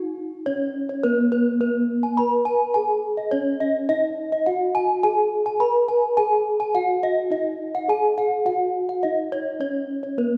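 Ceremonial and brilliant, this gamelan excerpt moves at 105 BPM in 4/4 and sits in a Db slendro tuning. A bronze metallophone carries the melody from the start, struck with padded disc mallets for a mellow, soft, slightly vintage and band-limited tone. At 0.5 seconds a second bronze metallophone joins with arpeggios an octave higher, its wooden mallet giving a full, close, dry attack; both instruments sit up front with the shimmering beats of paired tuning, set in a reverberant recital hall.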